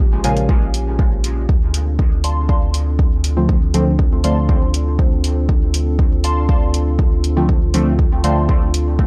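An up-front, overdriven electronic kick anchors this hazy, nocturnal dub techno excerpt alongside a gritty hi-hat, a round sub bass, deep mellow chord stabs and a warbling, dusty pluck riff steeped in dub echo, all over a moody, nasal analog pad that shifts from Bbm7 to Dm7 in a dry, cassette-tinged recording.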